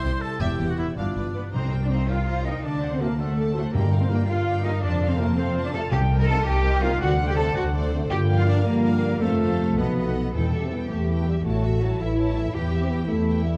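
A dark, warm orchestral sound fills a wet scoring stage in this heroic adventure film-score excerpt, cut from a longer piece, moving at 109 BPM in a straight 6/8 with an adventurous, determined mood. It sits in C dorian before turning to E minor at 10.3 seconds. A warm violin section carries the melody with a smooth, even top, backed by a second, lush violin line and a focused, close viola section in the background. Beneath them, distant cellos and an up-front double bass section hold the bass, while a mellow French horn section sustains chords and a bright, ringing harp plays very quiet arpeggios throughout. A clear oboe opens with a brief second line before a pure, silvery flute takes over from 1.3 seconds. Clear, roomy trumpet stabs and very quiet trombone chords join in the middle stretch, and hard-mallet timpani with calf heads punctuate it, striking once more just after the return to E minor.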